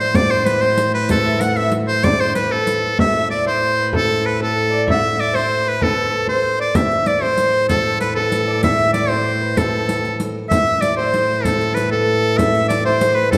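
Bathed in a wet recital-hall reverb with a dark production, this mysterious, ancient-sounding medieval dance in A minor moves at 128 BPM in a straight 6/8, with an edgy, close-miked shawm carrying the folk-style melody up front over a rich, reedy, fretted viola da gamba drone on A2, a bright, ringing, fingerpicked Celtic harp and a distant, woody, bowed fiddle as second lines in the background, a deep, large frame drum played with soft hands, and a dry riq struck with hard hands that drops out at 2.8 seconds and returns at 6.8 seconds, all cut from a longer piece.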